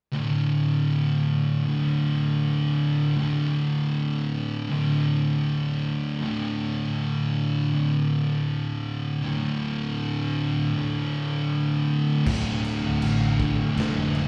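Stoner and doom metal at a hypnotic, brooding 79 BPM in 4/4, where two thick, up-front fuzz guitars grind out a distorted D5 riff before a gritty garage drum kit with punchy kick, snare and crash, a round, overdriven fingered bass and a very quiet, silky string machine holding sustained Dm chords all enter at 12.3 seconds, the whole passage caught live through a club PA with light reverb until it cuts off at 14.3 seconds.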